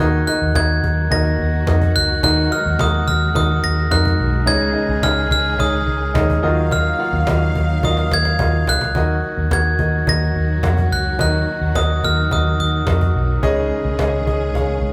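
A sparkling, close-miked glockenspiel carries a ringing, bell-like melody over a clear baby grand piano, lush bowed strings and a dark, round, foam-muted electric bass up front, while a woody cajon with soft hands sits in the background, driving this bittersweet piano-driven pop in Eb minor at 107 BPM through Ebm, Dbsus2 and Ebmadd9 chords in a large studio room, with a drum fill from 7.8 to 9.0 seconds and the glockenspiel stopping at 13.1 seconds.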